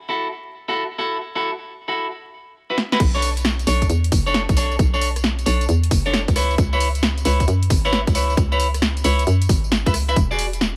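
Vinyl crackle and digital ambience frame this soulful, moody two-step UK garage excerpt with a swung groove, where up-front clean electric guitar stabs, roughened by vintage 12-bit sampler grit and delay, play alone from 0.1 seconds over an F#m7 chord. A drum fill at 2.8 seconds brings in an overdriven analog drum machine with a punchy snare, hi-hat, rim click, tambourine and crash cymbal. At 3.0 seconds the drop lands with a tight, tape-warm layered electronic kick re-recorded in a large room and a hollow, bouncy FM bass with a fast attack and decaying tone sitting up front.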